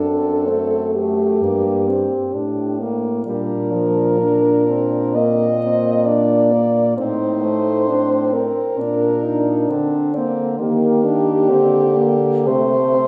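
Classical music for a horn quartet, this lyrical, melancholic passage moves at 66 BPM in 4/4 with a rubato, yearning feel, taken from a longer piece. Four mellow French horns play throughout the 13.1 seconds, with the melody horn sitting up front between G4 and Eb5, colored by a light vibrato. Beneath it, a second horn carries a soft-attacked, close-miked second line from A3 to Eb4, placed in the background. A third horn supplies accompaniment from F3 to Eb4, while the fourth anchors the bass from F#2 to Eb3, both sounding distant and roomy. The harmony passes from D7/F# through Gm, Bb, Adim and Eb before settling on C5 at 12.5 seconds, all wrapped in the lingering reverb of a recital hall or church.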